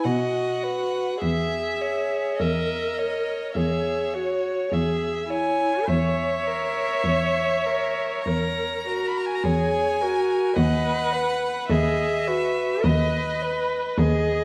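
A serene, rubato passage cut from a longer romantic slow movement for string quartet opens with a focused violin singing the high melody with vibrato over a second violin's expressive, gliding line, while a smooth, even viola carries the accompaniment up front and a rich bowed cello joins on the bass a moment later, all set in a dark, warm production with a wet scoring-stage reverb.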